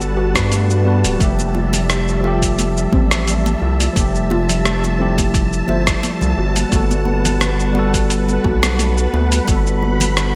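A glossy, 1980s-style digital sheen and a lush hall reverb frame this relaxed, smooth sunset chillout passage, cut from a longer piece and moving at 87 BPM in 4/4 with a light sixteenth-note swing. A clean tine electric piano played through a combo amp carries the accompaniment with delay, while a silky, dark string machine holds slow-attack chords alongside it, thickened by ensemble chorus. Up front sits a round analog bass, deep and mellow, the loudest part of the mix. The drums blend a gritty, tape-kissed sampler-style kit of cabasa, hi-hat and rim click in small room ambience and gated reverb with a layered electronic kick that enters at 0.4 seconds. A soft pluck with chorus and delay arpeggios quietly in the background from 0.2 seconds, and very quiet, hard-handed congas join at 1.4 seconds, all over a gentle drift between Gmaj9 and Fmaj9.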